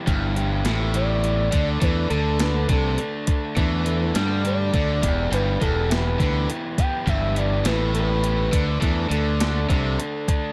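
An expressive portamento synth lead, smooth and dark with a warm sawtooth tone, vibrato, chorus and digital delay, carries the melody from 1.0 to 9.1 seconds in this restless, cool indie rock excerpt in E minor, set at 69 BPM in a straight 6/8. Two bright, picked overdriven electric guitars play riffs, one higher with subtle chorus and delay and the other lower and compressed, over a growling, up-front fingered bass with overdrive. A gated 80s digital drum machine with a thumpy kick, gated-reverb snare and hi-hat adds tape-tinged, small-room punch, while the chords move between Em and D5 under light reverb.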